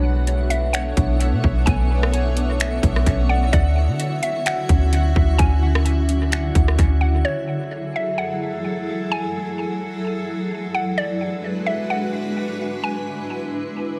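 A lightly reverberant, echo-heavy mix frames this melancholic, spacious cloud-rap excerpt in F# minor at 129 BPM, felt in half-time. A woody, FM mallet-like synth pluck with chorus and tape echo carries the melody over a blurred, detuned granular cloud pad holding Bm11 and Dmaj9, while warbling lo-fi synth keys arpeggiate, a deep, round 808-style bass sits up front, a twinkling granular texture sparkles in the background, and a trap drum kit with hard-clipped kick, metallic hats, finger snaps and rim clicks enters at 0.3 seconds. By 7.2 seconds the keys, bass, texture and drums have dropped out, leaving the pluck and pad alone over F#m9 and G#m7b5 until 14.0 seconds.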